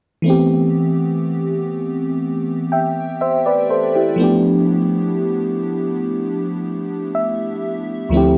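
In straight 4/4 at a slow 61 BPM, this moody, sensual R&B excerpt in A minor rests on a single FM electric piano layered with a soft pad, moving from Am7 to G7 as it spans a low D2 up to G5. The keys are lush and dreamy, with a fast, decaying attack, a noise layer and chorus, sitting up front in a dry, gritty hardware recording touched by light digital reverb. A short electric piano fill arrives at 6.7 seconds before the fragment ends.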